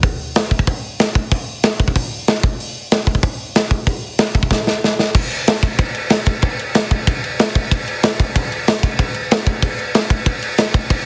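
A big acoustic rock drum kit, up front in a studio room, drives this upbeat, energetic punk clip at 188 BPM in a straight 4/4, with bright crash and hi-hat cymbals, a medium-tuned snare and a punchy kick. A drum fill from 4.5 to 5.2 seconds carries the beat into a second section that runs to the end of this short cut from a longer piece. The sound is dry and heavily squeezed by multiband compression, giving it a dense, radio-ready edge.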